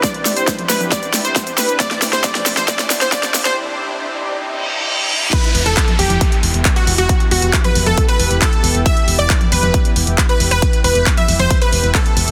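A dense, heavily limited mix with light reverb carries this driving, emotional uplifting trance at 136 BPM in E minor. It opens on a build-up over Cadd9. A bright, detuned supersaw stab carries the melody through tape echo and a low-pass filter, and a lush, thick unison pad sustains chorused chords. Around them come a filter sweep, an electronic riser and reverse cymbal in the background, and a grainy egg shaker that stops at 3.5 seconds. The overdriven big-room kit (congas, crash, handclaps, hi-hat and a huge snare) plays a drum fill over a punchy electronic kick. At 5.3 seconds it drops onto Em: a very quiet ring-modulated unison pluck adds a second line, and from 5.5 seconds a round, mellow FM bass holds E1, with the stab, pad, bass and kit pumping to the sidechain.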